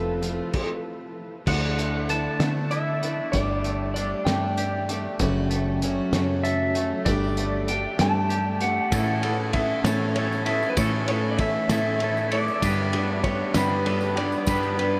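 A dreamy mix soaked in huge ambient reverb gives this folk rock and heartland rock excerpt an open-road, hopeful mood in 6/8. A dark, compressed lap steel carries the melody with slide and volume swells through analog delay. Beneath it, a bright, fresh-stringed plugged-in acoustic guitar and a twangy electric guitar riff both shimmer with lush chorus. Fingered, foam-muted electric bass pairs with a cloth-damped drum kit that sounds muffled and gritty, with a fat snare, tight kick and a rolled-off top. A second twangy electric guitar adds a brief line at 1.5 s, just after a stop, and at 8.9 s a boxy, woody upright piano and a jingly tambourine join quietly in the background.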